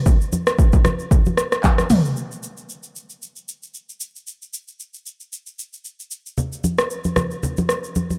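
A deep house drum kit drives this amapiano groove at 114 BPM in 4/4, with a 55% swing on the sixteenths giving the handclaps, hi-hat, kick drum, rim click, shaker and toms a light swing from 0.1 to 8.2 seconds. The kit is electronic and layered, with a punchy kick and dark hats, sounding re-recorded in a small room and sitting up front in the mix. Congas join at the start and drop out at 2.0 seconds, returning at 6.4 seconds; they are acoustic, low-tuned and close and dry, with a bright, thin skin and hard hands that also sit up front. The mood is late-night and soulful, shaped by a dark production and light reverb. Cut from a longer piece, it opens on a drop before moving into a new section at 2.2 seconds.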